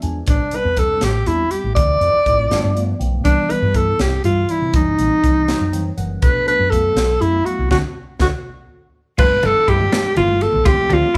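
A breathy alto saxophone with vibrato and a smooth top leads up front from 0.3 seconds in this bright, soaring electric jazz fusion excerpt at 81 BPM in a straight 6/8, set in G mixolydian. Beneath it, a worn, slightly out-of-tune tine electric piano with a phaser supplies chords and short fills, a dark, round fretless bass anchors the low end, and a crisp, airy drum kit with a high-tuned snare and punchy kick drives toward a band accent and a drum fill. At 9.2 seconds a clean, picked semi-hollow guitar adds quiet stabs while damped, hard-hand congas sit in the background, the band playing together in one large studio room with moderate reverb.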